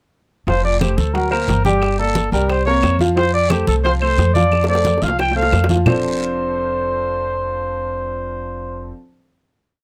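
At 0.5 seconds a sunny, lively Afro-Cuban jazz piece in F major opens at a brisk 178 BPM, with a mellow, soft-edged trumpet singing a motif-based solo melody up front over a clear, slightly detuned upright piano playing a montuno in octaves and a thumpy, gut-strung pizzicato bass driving a tumbao that anticipates the chords. Thick-skinned congas with slaps and open strokes, high-tuned bongos in steady eighths with hand bell, a raspy guiro and distant woody claves tapping a two-bar time line fill out the percussion, leading into a drum fill at 4.5 seconds. The percussion stops at 5.9 seconds, leaving trumpet, piano and bass to hold a final chord in a close, dry, detailed sound.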